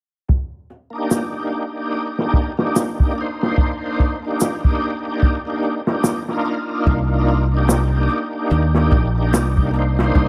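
Trip hop at 73 BPM in 4/4, with a swung sixteenth-note feel in C minor, this smoky, cinematic excerpt from a longer piece rests on a single Cm7 chord. A crunchy breakbeat drum kit of hi-hat, kick and snare arrives at 0.3 seconds, its saturated, gritty sound up front with a tight kick, a medium-tuned snare and a rolled-off top from low-pass filtering. An overdriven tonewheel organ joins just after as accompaniment, thick and full, with audible key click, chorus vibrato, a slow rotary speaker, tremolo and tape echo. A tube shaker, blended with a group handclap, sits quietly in a small room from 1.1 to 9.5 seconds. At 6.9 seconds a fingered electric bass enters, dark, round and direct, placed up front in its low register. Light reverb and studio ambience frame the whole in a close, hazy space.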